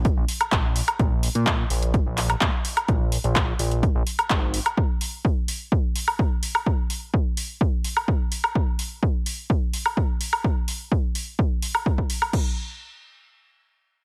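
Progressive house at 127 BPM in a straight 4/4, expansive and bittersweet, cut from a longer piece and set in a digital ambience. A fat, detuned analog bass of sawtooth and square waves, with a fast attack, a filter sweep and a moving notch, pumps with the sidechain until 4.6 seconds, ranging from Ab1 to Bb2. Up front, a punchy, overdriven electronic kick and a layered deep house kit of crash, handclaps, hi-hat and woodblock drive on until 12.4 seconds, the hats, cymbals and percussion breathing with sidechain pumping.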